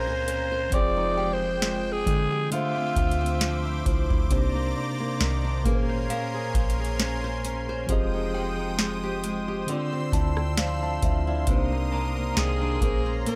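A growling, raspy alto saxophone opens this moody, longing contemporary R&B excerpt over mellow tine electric piano, a lush detuned pad with chorus and sidechain pumping, fingerpicked flamenco guitar, a round, soft 808-style bass and a faint, warbling FM chime with delay. A booming analog drum machine enters almost at once, with its deep kick, crisp snare and metallic hats sitting up front in a dry mix, while the saxophone, carrying a touch of delay, drops out at 3.8 seconds. The electric piano plays a fill from 9.7 seconds, and the saxophone returns at 12.4 seconds as minor-ninth chords continue to cycle beneath it.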